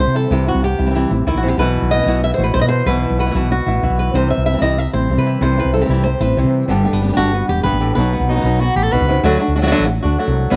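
A bright, fingerpicked flamenco guitar carries the melody up front with audible finger squeaks, over dark fingerpicked guitar stabs that stop at 9.2 s and a woody, growly, punchy fretless electric bass, while a soprano saxophone with vibrato adds a short second line from 8.3 s in this intense, passionate flamenco excerpt at 188 BPM, set in a moderate echo-chamber reverb.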